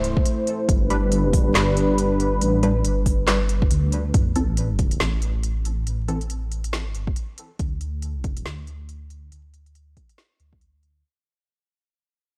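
A dry, gritty recording with vinyl crackle and transformer saturation carries this heavy, meditative deep dubstep at 139 BPM in a swung half-time feel: a moody analog pad holds Am and G chords until 4.1 s, a rumbling detuned saw bass sits up front and takes a filter sweep as the fade-out begins, an electronic kick and a deep house kit with woody snare, smooth hats and handclaps drive the groove, a muted filtered chord stab with phaser and dub echo drifts through until 6.2 s, and a very quiet sub drop marks the impact at 4.1 s.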